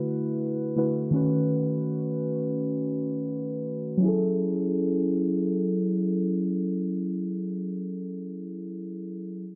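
A muted, felt-like synth keyboard plays alone in free time, its soft, dark tone sitting up front with a chorus shimmer and a filter sweep over the first 4.0 seconds as it moves from D69 to B7/D#. This short R&B fragment in F# minor feels moody and longing, settling on F#m7 in a second section. Light reverb gives the intimate, decaying notes a small sense of space.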